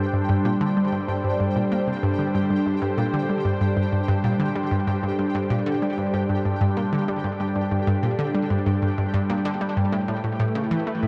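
A detuned analog pluck riff, round and bright with a fast attack and short decay, sits up front from the very start, colored by chorus, cassette tape grit and tape echo in the low register between G2 and Bb3. Beside it, a phased analog pad holds sustained chords from G3 to C5, its detuned sawtooth tone swirling and evolving through phaser and chorus with a slow attack and long release. Higher up, a mellow, tempo-synced gated texture of detuned unison triangle waves pulses between G4 and G5 at a lower level, bathed in chorus and its own built-in reverb. This is hypnotic, cosmic, sequencer-driven ambient space music at 95 BPM in a straight 4/4, resting on a G5 harmony before moving to A7(no3) at 9.9 seconds. The dark production sits in a huge, wet reverb with a 7.4-second decay, and the passage is cut from a longer piece.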